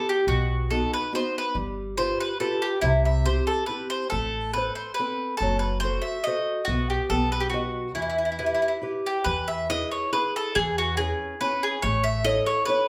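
A lilting 3/4 waltz pulse at 140 BPM, with a light swing on the eighth notes, carries this Italian folk serenade, cut from a longer piece and tuned slightly low at A4 = 438 Hz. The mood is wistful and passionate, set in E harmonic minor before brightening into E major at 9.3 s. Up front, a picked mandolin carries the melody with a round, doubled-string tone, while a small, bright nylon-string guitar fingerpicks the accompaniment, its finger squeaks audible. An upright bass enters at 0.3 s, plucked on gut strings with a woody, dark, thumpy sound, and holds the low end until 12.4 s. The harmony moves through B, G7, C, Amadd9 and F#dim on its way to Em, then settles into E, C#m7/E and A. The trio plays live together in one large studio, wrapped in a generous reverb.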